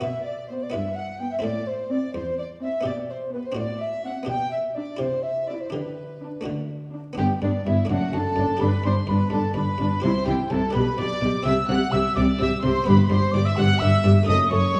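Brilliant and lively, this baroque-style concerto movement with solo episodes moves at 84 BPM in a straight 6/8, counted in dotted quarters, in G major and tuned slightly high to A4 = 441 Hz, taken from a longer piece. A mellow wooden baroque flute carries the melody with a pure, tongued tone and vibrato, joined from 0.5 seconds by a dark violin section whose reedy gut strings have a smooth top. Beneath them, a close, warm violin section plays a second line, while a distant viola section with a shadowy, light-vibrato sound and a muted, lute-like buff-stop harpsichord in the Flemish style, dry and set in the background, fill in the accompaniment. A distant cello section anchors the bass from the start, and at 7.2 seconds a rich double bass section enters as the music moves into its second section, deepening the low end with period-style bowing. The harmony opens by moving through chords such as Am, G/B and D7/A, and later ends on a tense D#dim/F#, all set in a wet recital-hall reverb with a 1.6-second decay.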